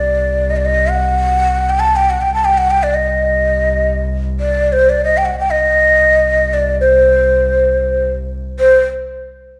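A wet recital-hall reverb surrounds this soulful, longing fragment of an Arabic maqam ensemble in free time, set in C maqam nikriz and tuned to A4 = 438 Hz. Close and up front, a breathy, end-blown ney carries the melody between C5 and A5 with tongued notes and vibrato, its reed-cane tone warm. Beneath it, a single bowed double bass holds a dark, intimate drone on C2, played sul tasto with an airy bow, soft attack and light vibrato; the bass falls away near 8.7 s, and a new section opens at 8.6 s just before the ney stops at 8.8 s.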